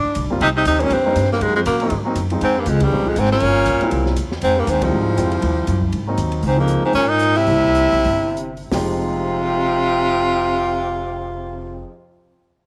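Small-group swing and bop jazz in a moody, smoky vein, this short cut from a longer piece sets a clear, close-miked tenor saxophone melody with vibrato over a woody, thumpy pizzicato upright bass, a polished grand piano, a breathy vintage baritone saxophone second line and a dark, smooth drum kit with a high-tuned snare that drops out at 8.8 seconds, with band accents at 2.8 and 4.8 seconds and a slowdown before the final section, all in light small-room reverb.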